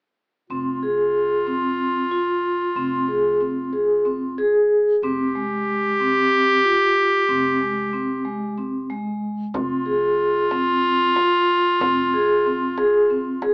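A restless, pensive piece of contemporary chamber music in an uneven seven-eight metre opens at 0.5 seconds with a clear, close-miked clarinet playing a classical-style second line up front. Beside it, a vibraphone struck with medium mallets rings out metallic, airy arpeggios with a fast motor vibrato, while a woody, pizzicato upright bass with steel strings sits quietly in the background on a single low note over an unchanging F minor chord. At 9.5 seconds a deep, large frame drum played with soft hands joins close and dry, and the whole recording carries a light reverb and the sound of an AM radio.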